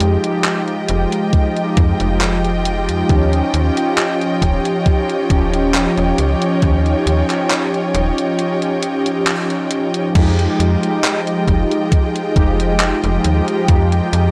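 Vaporwave at a slow 68 BPM in F minor, melancholic and nostalgic, cut from a longer piece: a dark, detuned synth brass with lush chorus and analog delay carries the Fm9 and Eb9 harmony over smooth, bowed studio strings, while a snappy FM bass with a metallic attack sits up front. A gated 80s drum machine supplies crash, handclaps and hi-hat with vintage 12-bit grit, and a thumpy, tape-warm electronic kick joins at 1.3 s and stays prominent. A break arrives at 8.4 s with a band accent inside it before a new section begins at 10.2 s, and the recording is dry and gritty with light digital ambience.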